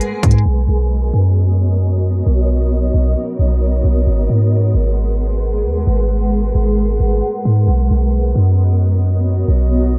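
A half-time 4/4 pulse underpins this blissful, floating cloud-rap excerpt: an electronic trap kit with crisp hats and a hard-clipped kick sounds only for the first 0.5 seconds, while a deep, boomy 808-style bass with a fast attack and a noise layer enters at 0.2 seconds and sits up front. Throughout, a blurred, evolving granular pad of detuned unison tones holds sustained chords, pumping with sidechain and carried by its own reverb, drifting from Bmaj7 to G#m7 and back. The production is dark and low-pass filtered, with little room reverb.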